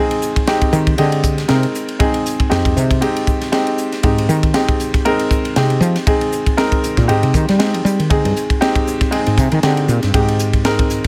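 A driving 118 BPM groove in 4/4 with a light sixteenth-note swing sets this nocturnal electric jazz fusion excerpt in motion, cut from a longer piece and resting on a rootless Fm9 in F dorian. A woody, growly fretless electric bass takes the solo from 0.7 seconds, round and punchy up front, over a crisp acoustic drum kit with a high-tuned snare, punchy kick, hi-hat and dark ride cymbal. A clear grand piano accompanies from the very start, all set in a small, airy studio room.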